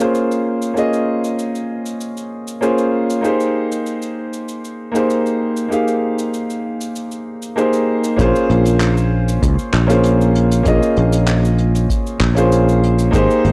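Sunset chillout at 97 BPM in straight 4/4, smooth and blissful in mood, this is a short excerpt cut from a longer piece. A boxy, up-front grand piano carries the accompaniment from the start, its tone softened by a low-pass filter and trailed by analog delay as the harmony moves from Bbm9 to Abmaj9. Beneath it, a brushed jazz kit sits low in the mix, with cabasa, handclaps and hi-hat adding texture. At 8.2 seconds the second section arrives with a growly fretless electric bass, direct and up front, and a deep analog electronic kick that stops at 13.3 seconds. The sound is gritty and dry overall, with transformer saturation, a light reverb and a small room ambience.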